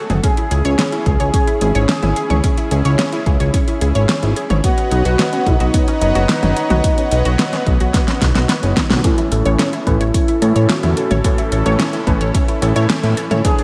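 A punchy electronic kick and a pop drum kit with a fat snare and metallic hats drive a straight 109 BPM groove in this nostalgic, cinematic synthwave piece, under a thick, detuned analog bass with tube saturation. In the background, a smooth, sidechain-pumped soft supersaw holds sustained chords over C#m and Badd9, while a round, bright analog pluck plays chorused, echoing arpeggios. Above them, an expressive synth lead with vibrato and lush chorus carries a dark, soft-attack melody. After a drum fill and a band accent, the harmony moves to A at 9.0 s and a vintage electric grand piano with a clangy bass register enters with filtered, delayed stabs under a filter sweep, while the mix sits in a big, arena-like hall reverb.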